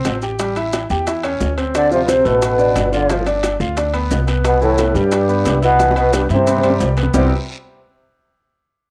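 Afro-Cuban jazz at a lively, sunny 178 BPM in C major, where a warm concert grand piano and a woody, thumpy pizzicato upright bass, up front, ride over round low-tuned bongos, ringing metal-shell timbales, grainy maracas and a raspy guiro, and at 1.8 seconds a distant, roomy trombone with light vibrato and scooped notes takes the melody alongside a breathy, mellow flute, the piano, trombone and flute carrying a cassette-tape tint, all in a homemade small-room recording with wet spring reverb, through an A7–Dm7–G7–Cmaj7 turn and a drum fill from 5.8 seconds in this cut from a longer piece.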